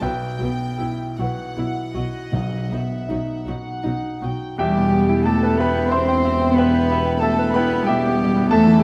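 A clear, up-front baby grand piano carries the melody from the start of this passionate, brooding romantic movement in 12/8 with rubato, alongside a dark, very quiet violin section. A second violin section floats its own line above intimate violas, cellos and distant double basses, all bowed sul tasto with a soft attack. Dry timpani struck with hard mallets sound briefly in the background at 2.3 seconds, and at 4.6 seconds a new section brings a hollow flute with vibrato and a warm clarinet on second lines over mellow French horn chords and a low tuba, captured by close, detailed microphones with light reverb.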